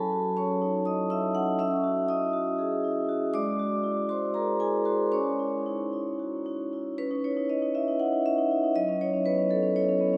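In a rubato 7/8 pulse at 238 eighth-note beats per minute, this playful, flowing fragment of a contemporary classical piece for solo vibraphone in C# minor has the instrument up front, struck with medium hard mallets and motor off, its metallic, ringing tone spanning F#3 to E6 and moving through F#m6, C#madd9 and G#aug7 harmonies before a new section arrives at 7.0 seconds, all bathed in a cathedral-like reverb whose tail lasts about 4.5 seconds.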